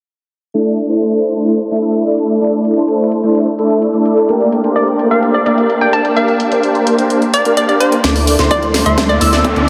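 Festival progressive house at 128 BPM, emotional and powerful: huge, detuned supersaw chords pump up front over a filter sweep and a house kit with cracking snare and hi-hats through a dreamy, reverb-soaked mix, moving from Dsus2 to Gm; a hollow, bouncy square pluck carries the melody from 4.8 seconds; at 8.0 seconds a fat, nasal analog bass, a bold vibrato unison lead playing high arpeggios and a punchy kick in the background join a drum fill and build-up, and a background riser enters at 8.6 seconds in this excerpt.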